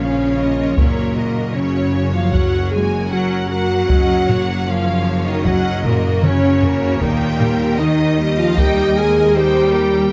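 A straight 4/4 rhythm from a compressed, saturated taiko ensemble played with hard sticks enters at 0.8 seconds and breaks into a fill at 5.8 seconds, driving this heroic, epic orchestral film-score fragment in which lush violins carry the melody over a second violin line with vibrato, an intense viola section accompanies and rich cellos sit in the background, distant double basses and a smooth-topped tuba hold the bass, and mellow French horns sustain chords, set in light reverb and captured with close, detailed microphones.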